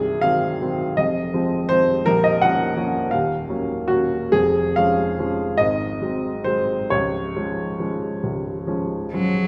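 Tender and serene, this romantic classical duo for cello and baby grand piano unfolds in a gently rubato 6/8, moving at roughly 40-57 BPM counted in dotted quarters, in Db major. The piano carries the accompaniment from the very start, its natural, up-front tone spanning from a deep Bb0 up to Gb5. Its harmony moves from Cdim through Fm7, Bbm and Ebm7 to Db/F, then gathers on Ab7 before settling on Db at 6.9 seconds. The cello arrives only at 9.1 seconds, a single bowed player sounding a focused, vibrato-laden Gb3 with a smooth top, placed close and present. A moderate concert hall reverb lends the whole a spacious glow, and the passage is cut from a longer piece, ending at 9.5 seconds just as the cello's voice emerges.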